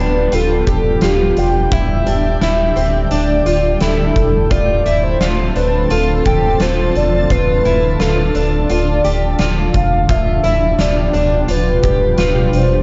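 Dream pop at 86 BPM with an ethereal, melancholic mood, where a velvety, wave-folded synth lead carries the melody through chorus and delay over a detuned, granular pad with octave-up shimmer, woody, octave-doubled fingerpicked twelve-string acoustic guitar arpeggios bathed in lush chorus, a deep sine-and-triangle sub bass with octave sitting up front, and a gritty, oversized low-tuned drum kit with a fat snare and boomy kick from 0.3 seconds, all in a dark production as the harmony moves from G7/D to A7sus4/D and back to G7/D at 10.1 seconds in this short cut from a longer piece.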